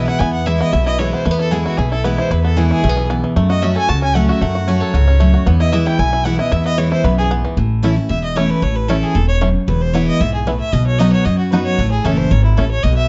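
Virtuosic and joyful, this bluegrass excerpt from a longer piece pairs a mellow, twangy banjo played with fingerpicks and a clear, smooth bowed fiddle with light vibrato, both carrying the melody in plate reverb, while the banjo drops out at 12.6 s. Up front, a bright, full-bodied picked dreadnought guitar and a woody, thumpy pizzicato upright bass on gut strings drive the accompaniment through E, F#m and back to E before the second section at 7.6 s turns to A, E, B and A. The moderate studio reverb and dark production, with nothing above 7.8 kHz, give the band a rounded, cozy sound.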